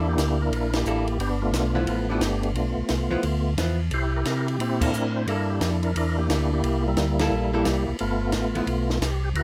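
Soulful and swinging, this soul jazz organ trio cut features a fat, percussive tonewheel organ carrying the melody with key click, light overdrive, chorus vibrato and a slow rotary speaker, while a second, mellow and round tonewheel organ plays the bass line up front through the same rotary and vibrato treatment. A clean, compressed hollow-body archtop guitar adds picked accompaniment until 8.7 seconds, and a compact cocktail drum kit with dark cymbals, a high-tuned snare and a punchy kick swings underneath, the band hitting accents at 0.7, 4.8 and 7.1 seconds over rich chords such as G13 and C13. The sound is dry and intimate, captured with close, detailed microphones.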